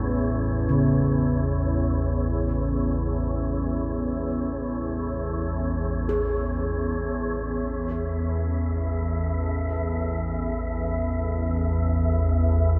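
An up-front, warbling organ-like drone with ensemble chorus opens this unsettling, cavernous free-time dark ambient fragment together with a deep, detuned sawtooth pad with chorus, mellow bronze gamelan-type bossed gongs playing arpeggios with diffuse delay in the background, and an airy, breathy wind-like noise texture, in a dreamy mix soaked in lush hall reverb; the pad stops at 7.3 seconds and the gongs at 8.7 seconds, leaving the drone and the wind to carry on to 12.8 seconds.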